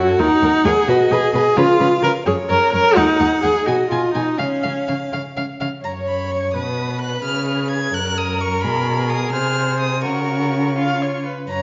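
Urgent and dramatic, this quick classical-period string quartet movement in F# major moves at 85 BPM in a rubato 6/8, with an airy, intimate first violin carrying the melody over a dark, woody second violin line, while an expressive viola with portamento and a warm, soft-attacked cello bass sit up front in a reverberant recital hall, the passage cut from a longer piece and shifting into a new section at 5.8 seconds.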